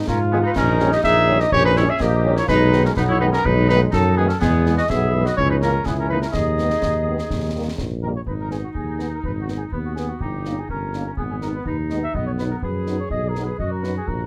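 Close, detailed and lightly reverberant, this resolute, martial excerpt of a wind band march in G# minor moves at 124 BPM in a straight 2/4, with a mellow cornet carrying the melody up front over a clear woodwind second line, a dark, soft-edged French horn section in the background, a mellow tuba bass, sustained trombone chords that stop at 8.0 seconds, and concert snare drum, bass drum and dark-toned clash cymbals keeping time.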